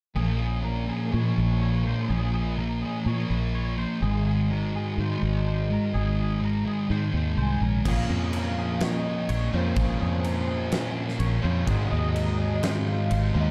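A dark, warm studio-reverb sheen opens this blissful, wistful shoegaze and dream pop excerpt, which is cut from a longer rock piece in a straight 4/4. From the start, a thick fuzz guitar plays a distorted, up-front riff with analog chorus. An overdriven semi-hollow guitar adds its own riff with reverse reverb, and a clean, twangy electric guitar fingers compressed arpeggios through ensemble chorus and slapback echo. A round, foam-muted fingered bass sits up front beneath them as the harmony moves between Bbm9 and Ab7. At 7.4 seconds a velvety, detuned synth lead enters with a mellow, sustained melody in chorus and slapback echo. At 7.9 seconds a huge arena drum kit arrives with a fat snare, punchy kick and crash cymbal, and it plays until 13.2 seconds.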